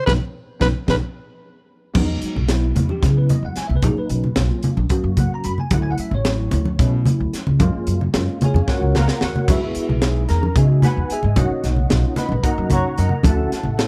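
Bright and funky, this electric jazz fusion excerpt in 7/8 opens with a growling, raspy soprano saxophone that is heard only in the first second, as the whole band hits an accent and the bell-like tine electric piano, treated with ensemble chorus, slips in a fill. From 2.0 seconds the piano comps through lush major-ninth chords over a woody pizzicato upright bass and thick-skinned congas. A punchy, saturated fusion kit with a high-tuned snare sits up front and throws in a fill at 8.7 seconds, all in a dry, close sound.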